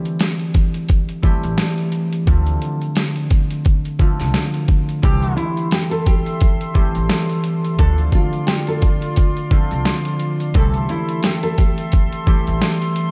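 A gritty, overdriven sampler-style drum kit with a thumpy kick and medium-tuned snare sits up front in this nostalgic, confident boom-bap hip-hop excerpt, swinging alongside a ringing concert harp with cassette-tape colour, a faint grainy tube shaker and a woody pizzicato upright bass that enters at 1.4 seconds. At 5.0 seconds the arrangement fills out: a warbling analog pad with chorus holds C6 and Dm7 chords, mellow jazz-style horn stabs with tape echo hover in the background, and a full-bodied fingerpicked nylon-string guitar carries the melody from 5.4 seconds. A dark studio reverb wraps the whole production.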